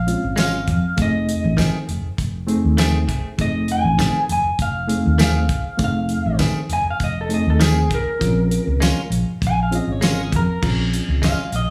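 A slightly broken-up, lo-fi guitar through a small old amp leads this smoky, mournful soul-blues excerpt in Bb minor at 100 BPM, soloing until 10.6 s over a round, foam-muted electric bass and a dry, damped 70s drum kit with fat snare, tight kick, hi-hat, crash and tambourine, while a worn, reedy electric piano with fast tremolo and twangy, direct-recorded guitar stabs through analog delay fill in the Bbm7 and F7#9 changes, all set in a moderate club ambience.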